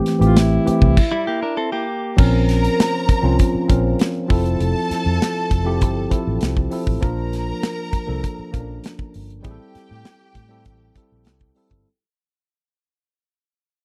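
Lush 1970s-style soul at 99 BPM in a smooth, warm mood, opening on a worn, slightly out-of-tune tine electric piano, a polished drum kit with punchy kick, hi-hat and crash, and a dark, round, foam-muted fingered bass, while a breathy, whispered alto saxophone touches a brief melody until 1.9 s. During a stop from 1.0 s, a clean, compressed electric guitar riff, recorded direct, enters at 1.1 s, before a focused, bowed string section with vibrato carries a second line from 2.2 s and a very quiet, mellow French horn section holds sustained chords until 7.0 s. Dry and close in a small room, this cut from a longer piece fades out over chords moving from Bbmadd9 through Fmaj7 and Bbmaj7 back to Am7.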